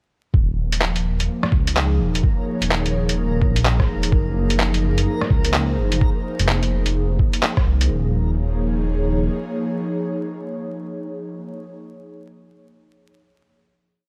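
An airy, breathy pad with chorus sits up front, pumping against the sidechain as it moves from Eb5 through Gbmaj7 and Fm7 from 0.3 seconds and rings out on a final Eb5 chord to 11.7 seconds, in this nocturnal, wistful future garage piece at 127 BPM with a shuffled 16th-note swing. Beneath it, a dark, detuned saw bass rumbles in long gliding notes, while a muffled, thumpy two-step kick and a compressed, pitched-down sampler kit of handclaps, hi-hat and rim click skitter close in the mix until the drums drop away by 7.9 seconds. A reversed, swelling granular texture holds a single bright high note in the background, and the piece sits in light digital ambience over a bed of vinyl crackle.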